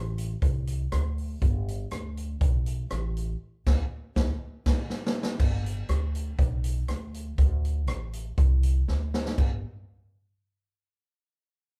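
Bouncy and upbeat, this short ska excerpt moves at 121 BPM in 4/4 with a straight feel in G major, played live in one room with light reverb. A woody, pizzicato upright bass sits up front from the start, while a swinging big-band drum kit with a punchy kick, medium-tuned snare, rim click, hi-hat and crash cymbal enters at 0.2 seconds. A band accent arrives at 3.4 seconds, topped by a drum fill, and another fill at 8.9 seconds leads into the closing section.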